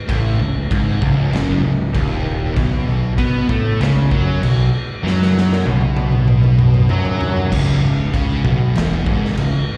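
Stoner and doom metal in C# minor at 97 BPM, this sludgy, brooding excerpt from a longer piece sets two thick fuzz guitars, one very quiet, and a bright, double-tracked distorted electric guitar in the background that drops out at 7.5 s, over a growling, overdriven picked bass up front and a raw garage drum kit with a boomy kick and gritty, saturated sound that plays a fill from 5.0 to 7.5 s, all heard as a live gig through the venue's PA with recital hall reverb.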